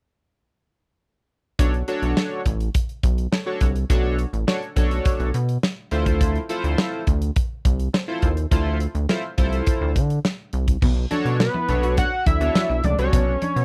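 At 1.6 seconds a chorused polysynth, a rubbery square bass and a modern studio drum kit come in together, setting up a late-night, danceable early-eighties boogie funk groove at 104 BPM in a straight 4/4. The polysynth has a glossy, retro sheen and sits lower in the mix, holding Bm9 before moving to Dm9. Meanwhile the bouncy, hollow bass and the drums sit up front, with a punchy kick, a medium-tuned snare, hi-hat, crash and bright cymbals. At 10.8 seconds the harmony returns to Bm9 as a new section opens. Here a twangy, clean electric guitar riff with subtle chorus and thin-skinned, low-tuned congas join in the background. At 11.4 seconds a fat, detuned analog lead takes the melody up front, with chorus, vibrato and a slapback echo. The sound is dry and close, like a 1970s-style studio recording with little reverb, and the piece is cut from a longer work.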